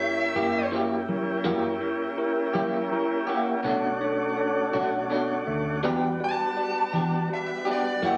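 A slow 12/8 blues pulse at 55 BPM carries this brooding, mournful fragment cut from a longer piece, where a smooth, dark, overdriven lead guitar solos up front over a clean tine electric piano that adds a fill at 2.6 seconds, a tonewheel organ holding sustained chords through a slow rotary speaker, a round, foam-muted vintage bass, and a slightly broken-up, compressed rhythm guitar with tremolo entering at 0.4 seconds, all heard through club reverb on a phone recording as the chords move from F#7b9 to Bm7 and Em7.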